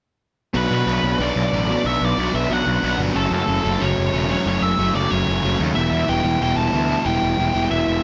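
Urgent and aggressive, this short punk passage, cut from a longer piece, charges along at 184 BPM in a straight 4/4, sitting in B minor with a tuning slightly below standard pitch. Two rhythm guitars drive the riff from 0.5 seconds: a sludgy distorted guitar with a warm, overdriven edge, and a dark, hollow-bodied semi-hollow guitar that sits further back in the mix. Up front, a fuzz-laden picked electric bass enters at 0.6 seconds with a bright, growly, amped tone, reaching down to a deep low E. A nasal lead guitar with a parked wah carries the melody high above the riff, its dark, overdriven voice placed prominently alongside the bass. The harmony moves from Bm to F#m at 3.2 seconds and on to Em at 5.8 seconds, all wrapped in a light reverb.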